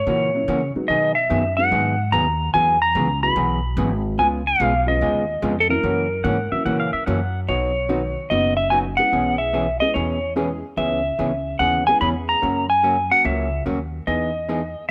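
A clean, up-front lap steel guitar sings the melody with slide and volume swells over a growly, thumpy pizzicato upright bass, a dark hollow-body jazz guitar and a jangly, detuned honky-tonk upright piano in this playful, cheerful western swing excerpt at 146 BPM in B major, while a bright, compressed pedal steel adds a brief second line from 6.2 to 7.4 seconds, set in light reverb.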